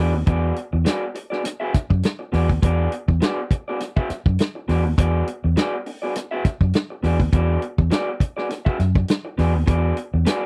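A dark, round, foam-muted fingered electric bass and a picked electric guitar through a small old amp, slightly broken-up and lo-fi, open the excerpt with accompaniment over a single E9 chord. At 0.3 seconds they are joined by a warm soul drum kit that sits up front with a tight kick, a medium-tuned snare and hi-hat, its sound mid-forward and rolled off on top. This strutting funk excerpt moves at 102 BPM in 4/4 with a light swing on the sixteenths, captured in a dry, close 1970s-style studio sound.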